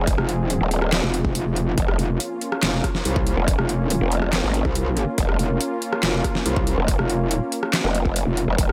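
A growling, aggressive bass sits up front in this menacing, chaotic heavy wobble dubstep fragment, its saturated, compressed tone shaped by a formant filter, chorus and overdrive as it wobbles across a low register. Alongside it, a metallic FM wobble bass enters at 0.2 seconds with distorted, up-front grit of its own. A lush, airy supersaw pad holds sustained chords from the start, its detuned unison sawtooth layers and noise evolving under a low-pass filter and sidechain pumping. The drums arrive at 0.1 seconds in a half-time feel at 141 BPM: a punchy, overdriven electronic kick paired with a kit of deep snare, metallic hats, handclaps and rim clicks that sits up front and carries the character of a small room. The harmony moves from Fm to Bbm/F, and a digital ambience frames the whole dense, abrasive passage.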